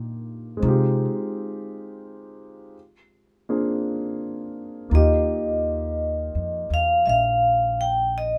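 This romantic, intimate jazz ballad in Eb major moves at a slow 56 BPM with a gentle swing, and the upright bass opens with a woody, pizzicato solo over a natural-sounding grand piano accompaniment as the chords move from Ebmaj9 through Fm7 to Bb7. At 5.0 seconds the vibraphone enters with the melody in its upper register, its metallic, ringing tone shaped by medium hard mallets, a slow motor vibrato and a boxy small-room character, sitting up front and a little louder than the others as the harmony settles on Ebadd9. Light reverb gives the close, warm sound a touch of space in this short excerpt.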